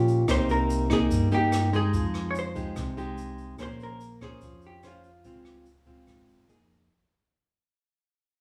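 A straight 4/4 bossa nova groove at 145 BPM in F minor carries this short, wistful and smooth passage, cut from a longer piece and fading out across its full 6.9 seconds. Up front, a fingerpicked nylon-string guitar with fresh strings and a full-bodied, deep classical tone lays down the accompaniment, while a pizzicato upright bass adds a woody, growly low end. A vintage hollow-body jazz guitar, electric, clean and picked with a dark, compressed sound, carries the melody between F4 and Db5 until 6.5 seconds. Brushes on an acoustic kit supply hi-hat, rim click and a boomy kick, and a grainy, mellow tube shaker sits close and dry in the background. The harmony moves through Cm7, Fm9, Bbm9 and Dbmaj7 before landing on Fm7, and the band plays live in one room with small room ambience and moderate large studio reverb.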